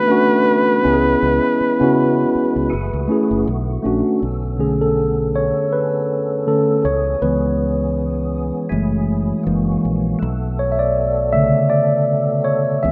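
Sultry and soulful, this slow R&B groove at 80 BPM in B dorian sways on swung sixteenths through a cut from a longer piece, with Bm9, C#m7 and F#m9 chords drifting by. A clear, pop-style flugelhorn with vibrato sings a brief melody up front until 3.5 seconds over mellow, clean tine electric piano and a fat, percussive tonewheel organ with key click, chorus vibrato and a slow rotary speaker; a dark, round fingered electric bass enters at 0.9 seconds. From 4.2 seconds the electric piano takes a solo, all set in a lush hall reverb within a rough home demo mix.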